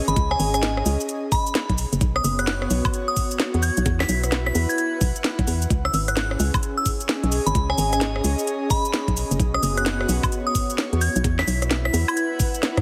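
A skippy two-step shuffle swung at 130 BPM drives this bouncy UK garage excerpt in C# minor, where a knocking electronic kick and a tape-warm, up-front garage kit of cracking snare, metallic hats, rim click, shaker and woodblock sit under a hollow, dark organ-like FM bass, a crystalline synth bell melody with chorus and delay, and a breathy, detuned pad with sidechain pumping, the mix set in light digital ambience with a heavily compressed radio sound until a drum fill at 12.6 seconds.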